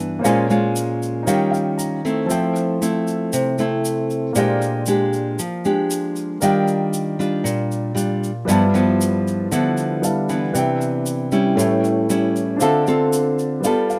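A fingerpicked nylon-string guitar sits up front in this relaxed, sunny bossa nova excerpt, joined from the start by a warm, intimate grand piano with deep bass and audible action noise, and a grainy, bright tube shaker placed close, all in light reverb as the harmony drifts from Bbm7 through lush extended chords to Dm7, with the piano slipping in brief fills at 1.3 and 13.6 seconds.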